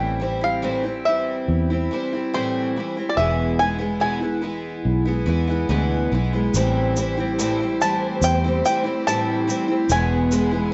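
A twangy bluegrass banjo carries the melody from the first second, its fingerpicked notes bright and percussive, over a shimmering, octave-doubled twelve-string acoustic guitar and a round, foam-muted electric bass that sits dark and up front. This is melancholic, haunting acoustic folk in A minor at a slow 71 BPM in straight 4/4, with the harmony moving between Am7 and E. At 6.5 seconds a lush bowed string section arrives in the background with soft attack and expressive vibrato, joined by a grainy tube shaker that plays until 10.5 seconds. The banjo, guitar and strings carry a cassette tape colouring. A moderate spring reverb gives the music a haunted air, and the home cassette recording keeps the top end dull, with nothing above 8.0 kHz. The passage is cut from a longer piece.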